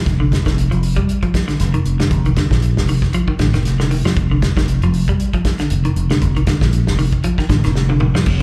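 Up front in the mix, a direct, amped fingered electric bass holds down the low end beneath a clean, picked electric guitar playing arpeggios and a soul drum kit with dark cymbals, a medium-tuned snare and a tight kick, driving a funky afrobeat groove in F mixolydian at 117 BPM with a 16th-note swing. It all sounds like a live gig heard through the venue's PA with club reverb, and a drum fill arrives at 7.8 seconds just before this short cut from a longer piece ends.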